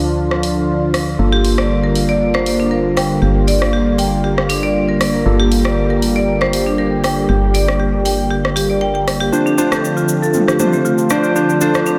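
A smooth, detuned analog pad and round, chorused keys stabs run through a low-pass filter and analog delay open this hypnotic, earthy afro house excerpt at 118 BPM, moving from Dm7 to Gm9 under a dreamy soak of plate reverb. A woody FM bass with tube saturation and a deep house kit of dark hi-hats, rim clicks and toms, re-recorded in a small room, ride a lightly swung groove, while bright hard-mallet marimba arpeggios with filtered delay join at 1.3 s. At 9.3 s the bass drops out and a grainy, close cabasa enters for a build-up back on Dm7.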